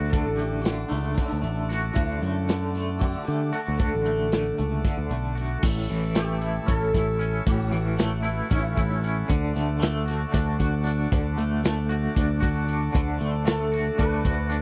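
A buzzing, shimmering sitar carries the melody in this hazy, trippy psychedelic rock excerpt, its mellow plucked line coated in slapback echo from 0.1 s until 9.1 s before it returns at 13.5 s. Beneath it, a twangy, clean electric guitar plays a double-tracked riff through tremolo, sitting up front alongside a round, picked electric bass with a dark tone. The gritty, saturated breakbeat kit drives the odd 7/8 metre with a punchy kick, a medium-tuned snare, hi-hat and dark crash cymbals, its top end rolled off. Low in the mix, a reedy vintage combo organ holds sustained chords that move from D to A at 5.6 s and back to D at 9.3 s. The sound is dry and close, like a 1970s studio session.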